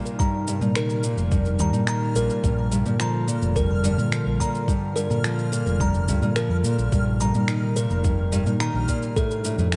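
Folktronica in Bb major at 107 BPM, this delicate, hopeful excerpt from a longer piece moves through a chord progression of Eb6, Bb6, Eb6 and F6 in a straight 4/4. A fingerpicked nylon-string guitar sits up front with classical, acoustic arpeggios colored by analog delay, while a dark, round hollow-body short-scale electric bass enters at 0.6 seconds and anchors the low end. Behind them, a warbling, nostalgic tape-like pad holds sustained, detuned chords with chorus and its own reverb, and a reversed, granular texture swells softly high above in the background. A bright, tinkling music box carries a second line through tape echo, close-miked and dry at its source. Soft electronic kick, shaker and finger snaps keep a gentle, tape-warm pulse, and the whole mix is dreamy and soaked in a moderate cathedral reverb.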